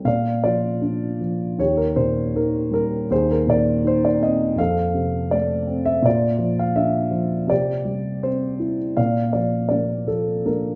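A dark, mellow concert grand sits up front in a moderate recital hall reverb, its deep bass carrying a boxy tone through this 10.8-second cut from a longer piece. It is a lyrical classical solo piano passage in Bb major at 81 BPM in 4/4, played with rubato and spanning Eb2 to F5. The calm, warm harmony moves from Bb through Eb, Abadd9/Eb and F, returns to Bb, then passes through C before settling back on Bb.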